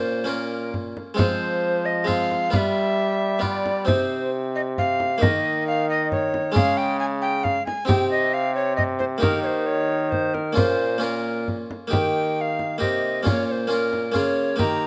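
A light reverb gives this short cut from a longer piece a modest sense of space, while the tenor recorder and harpsichord sit up front. It is a solemn, rustic renaissance-style consort dance in Bb dorian, moving at 134 BPM in a straight 3/4. The tenor recorder carries the melody with an airy, woody tone, tongued notes with a touch of chiff, and vibrato. Beneath it, a bright, plucked harpsichord in the Flemish style, on a single set of strings, supplies mid-forward accompaniment. A brilliant, vintage-sounding trombone holds the bass line in a classical manner, and a close, dry frame drum played with hard hands enters at 0.7 s with a warm acoustic thud. The harmony moves from Bbm through Fm, G7 and Cm, open fifths on Eb and Db, then Cm, Eb and Bbm, before a new section arrives at 11.9 s, moving from Eb to Bbm toward the cut at 14.9 s.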